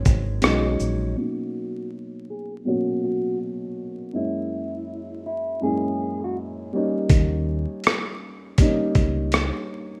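A swung 4/4 groove opens this dreamy, cosy lo-fi hip hop excerpt: a gritty, compressed sampler-style kit with a thumpy kick, hi-hat, rim click and shaker sits up front beside a round, punchy dub bass. Both drop away as a clean, fingered electric guitar takes the melody at 1.2 seconds through low-pass filtering and tape echo, while a woody, boxy upright piano carries the chords throughout beneath a filter sweep. Drums and bass return at 7.1 seconds, all wrapped in light reverb, vinyl crackle and the rough feel of a home demo.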